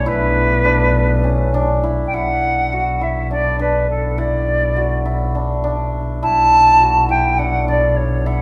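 Contemporary instrumental chamber music in 7/8 meter at 205 BPM counted in eighths, this excerpt from a longer piece sits in B minor with an urgent yet pensive mood. A silver concert flute carries the melody throughout, its tone pure with a crisp attack and expressive vibrato, heard up front though set at a slight distance. Beneath it, a hammered dulcimer spins shimmering, ringing arpeggios, while a bowed double bass holds a rich, smooth low B with even vibrato, close and prominent. A mellow woodwind section sustains chords in the background only for the opening 2.1 seconds, sounding roomy and classical in style. The harmony moves from an A chord over B to B minor at 2.1 seconds, and the whole is bathed in a recital hall reverb with a 1.4-second decay.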